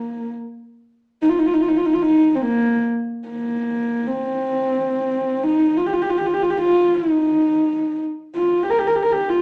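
Mongolian folk in free time and a Bb zhi mode, this short cut from a longer piece has a galloping, proud mood carried by a single horsehead fiddle playing solo throughout its 9.4 seconds. The dark, husky bowed tone sits intimate, close and up front, with light vibrato, soft attacks, portamento and an airy bow moving between Bb3 and Bb4. A club reverb adds a wet room around the lone player.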